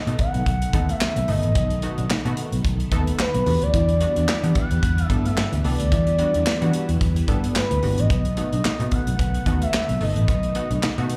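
Early-eighties boogie funk with a slick, danceable swing, heard as a short cut from a longer live club performance through the venue's PA, with small-room ambience and club reverb. An up-front modern studio kit with punchy kick, snare, hi-hat and handclaps drives it alongside a dark, round, foam-muted fingered electric bass, while a detuned sawtooth polysynth comp plucks funky chords. Over a shimmering string machine of violins and a clean, mellow electric guitar riff set in the background, a smooth, warbling portamento lead sings the melody with vibrato, chorus, slapback and tape echo across a B7 to Em7 progression.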